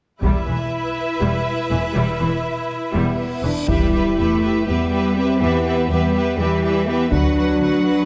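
Strings and taiko drums open together at 0.2 s in this heroic, relentless epic orchestral film cue in E minor, in 7/8 at 244 BPM counted in eighths, with a focused studio violin section on a second line, smooth lush violas, rich cellos and expressive portamento double basses beneath hard-stick taiko hits; a mellow, tight French horn section adds sustained chords from 2.9 s, and a reverse cymbal leads into a huge, bright impact at 3.7 s as an intense, distant violin melody enters, the harmony moving from Em to Bm/D within a moderate scoring-stage reverb.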